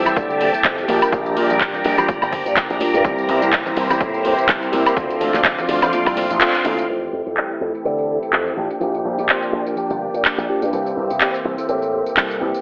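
Filtered disco house in F major at 125 BPM with a swung 16th-note feel, this funky, joyful excerpt has a narrow, telephone-like sound in a moderate room reverb, built on a growly envelope-filtered slap bass, a punchy electronic kick, and an up-front house kit of handclaps, warm hi-hat, tambourine and woodblock, with ringing congas and maracas in the background. A scooped, clean electric guitar riff, a bell-like tine electric piano and a swirling, phased string machine holding sustained chords all pump against the sidechain over a Fmaj9, Bb6, C7, Dm7 progression. The kick drops out at 5.9 seconds ahead of a band accent, a filter sweep runs from 6.9 seconds, and a mellow, tight horn section in octaves carries the melody from 7.4 seconds.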